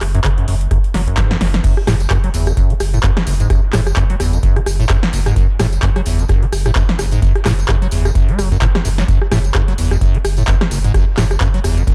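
A dark, dry mix opens this gritty, driving acid house excerpt at 129 BPM in F# minor with a swung 16th feel: a deep, round sine sub bass with tube saturation and sidechain pumping sits under a squelchy, hollow, resonant square-wave acid bass riff carrying a filter sweep, subtle chorus and delay, while a tape-warm, deep electronic kick and an analog drum machine with a punchy snare, metallic hi-hats, handclaps, rim clicks and crash cymbal roll through a fill from 0.9 seconds into the drop at 1.6 seconds, where a jingly tambourine enters quietly in the background.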